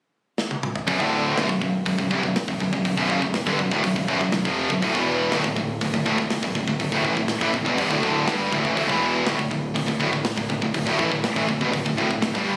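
Heavy metal with a heavy, relentless mood, captured on a phone in a small room and cut from a longer piece, opening with a tight acoustic drum kit fill from 0.4 to 0.9 seconds before the band crashes in. Two bright, high-gain distorted guitars drive a picked riff, one up front and one in the background, while a growling overdriven electric bass sits beneath them. The mid-forward kit, with its medium-tuned snare and tight kick, plays on as the harmony moves from B minor to a D power chord at 4.8 seconds.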